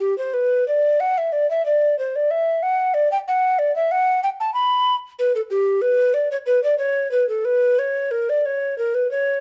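The rhythm moves freely in a rubato 4/4 around 92 BPM, giving this baroque-style classical fantasia a flowing, introspective character. A single tenor recorder carries the whole passage on its own from 0.0 to 9.4 s, ranging from G4 up to B5. Its tone is hollow, mellow and woody with an airy edge, its tongued notes begin with a chiff, and vibrato colours the line. The line opens in E minor and shifts to B minor from 5.2 s. The recorder sits up front in the sound with light reverb around it, and the recording is a fragment cut from a longer piece.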